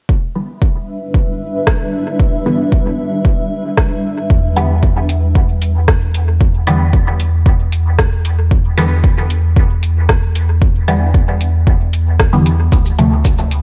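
A punchy, up-front electronic kick opens this hazy, deep dub techno cut at 114 BPM in E minor. It is soon joined by a muted, detuned chord stab carrying a filter sweep, phaser, dub echo and sidechain pumping, while a cloudy, evolving granular pad holds an Em7 chord until 4.3 seconds. A tape-warm vintage rhythm box adds metallic hats, rim click and shaker through low-pass filtering and dub echo. From 4.3 seconds a round, soft sub bass sits up front with sidechain pumping of its own, and a Dm7 arrives at 12.7 seconds within a light reverb.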